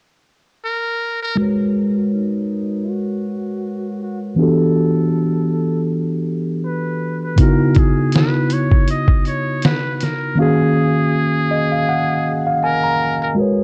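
A muted trumpet with a metal mute carries the melody from 0.6 seconds, its buzzy, thin tone sitting low in the mix with light vibrato and a jazz-style solo phrasing, softened by a low-pass filter. A mellow, clean tine electric piano enters at 1.4 seconds and sits up front, giving this reflective, nostalgic lo-fi hip hop excerpt its harmonic bed as it moves through G#m11, Em11, C#m11 and D#m11 in G# minor. A filter sweep runs across most of the piece, and the electric piano plays a fill near the end. A compressed, pitched-down sampler-style drum kit appears briefly from 7.4 seconds with a thumpy kick, a medium-tuned snare and hi-hat, muffled yet up front, swinging gently at a relaxed 80 BPM. Light reverb and a digital ambience surround the parts, while worn, warbling old tape with pitch drift gives the recording its faded, cassette-like character.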